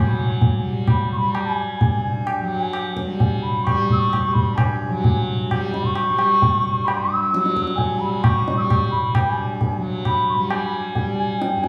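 A mellow, distant bansuri with expressive vibrato carries a devotional, serene melody in G raga marwa over a buzzing, shimmering tanpura drone, while a low-tuned, up-front tabla joins at 0.4 s in this Hindustani classical excerpt in 5/4 at 131 BPM that gradually speeds up, set in the wet reverb of a recital hall.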